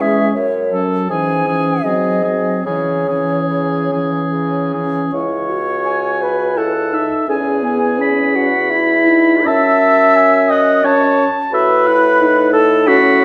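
Solemn and elegiac, this fragment of a slow, rubato classical movement for wind quintet in triple time sets a pure, hollow, close-sounding flute melody with vibrato over a distant oboe second line with light vibrato, a warm, prominent clarinet and a dark French horn in the accompaniment, and a vintage-toned bassoon bass, all sounding throughout in a wet recital hall with a faint mains hum beneath.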